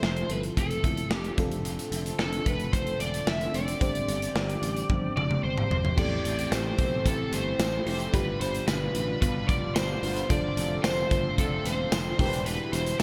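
A bright 1980s-style digital production bathes this moody, urgent pop passage in a moderate plate reverb, with the drum kit punchy and up front under a gated reverb. At 111 BPM in a straight 4/4 and A minor, an overdriven lead guitar from a small cranked amp carries the melody with a dark, picked tone and analog chorus, sitting forward in the mix. Behind it, an FM electric piano layered with a soft pad adds a lush, dreamy shimmer through chorus and phaser, while a smooth analog pad holds sustained chords with a slow attack and long release. A growly fretless bass, played direct and amped, anchors the low end, and the kit's medium-tuned snare, crash, hi-hat, toms and tambourine push the groove in a pumping room sound. A drum fill at 4.9 seconds leads into a second section at 6.0 seconds, where a very quiet double-tracked distorted guitar joins, followed at 7.1 seconds by round, detuned synth brass stabs with vibrato and a filter sweep, as the harmony moves from Am7 through G7 and F6 to Em7.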